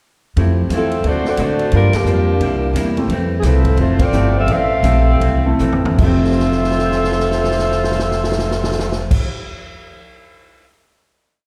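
Heard from further back in a reverberant scoring stage, this short, joyful big band swing piece in F major moves at 150-177 BPM, with a dark, tight saxophone section voicing a motif in four-part blocks over a woody, thumpy walking upright bass, a punchy drum kit keeping a ride cymbal pattern, syncopated rootless comping from a background grand piano and clean four-to-the-bar strumming on a hollow-body electric guitar, with band accents at 1.9 and 4.0 seconds before the tempo slows into a final chord reached at 6.0 seconds under a drum fill.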